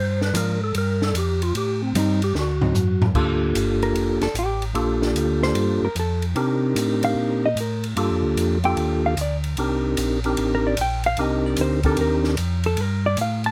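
A swinging 149 BPM groove in 4/4 drives this smoky, late-night soul jazz organ trio excerpt in G minor, where a soft, flute-like tonewheel organ with third-harmonic percussion and fast rotary speaker solos until 3.1 seconds, over a drum fill from 2.3 seconds, a round, key-clicking organ bass with slow rotary holds the low end, an open acoustic kit with dark cymbals, a high-tuned snare and boomy kick keeps time, and a dark, compressed hollow-body guitar takes the solo from 3.1 seconds, all captured with close, detailed microphones and little reverb.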